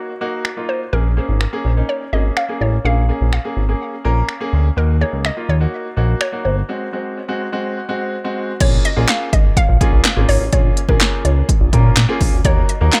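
A clear baby grand piano carrying sidechain pumping and dub echo and a hollow, bouncy square pluck melody with chorus and dub echo open this confident, bittersweet dance-pop piece in Bb minor at 125 BPM. A punchy, up-front house drum kit of kick, snare, crisp hi-hats, handclaps, finger snaps and crash cymbal enters at 0.4 seconds to drive it, joined at 0.9 seconds by a dark, glossy chorused synth bass with sidechain pumping, all set in a lightly reverberant, echo-heavy mix with a break from 6.7 to 8.6 seconds.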